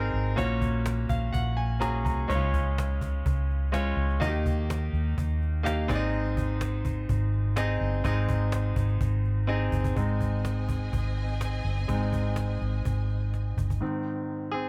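Anthemic and uplifting, this piano-driven pop excerpt rides a straight 4/4 groove, with a bright, brilliant concert grand carrying the accompaniment up front over a dark, round, foam-muted electric bass and a snappy cajon played with soft hands. The piano breaks into a short fill near the start, and the cajon adds fills at 9.5 seconds and 13.3 seconds. At 10.0 seconds the piano takes a solo while a bowed studio string section enters with expressive vibrato and portamento, all in light reverb.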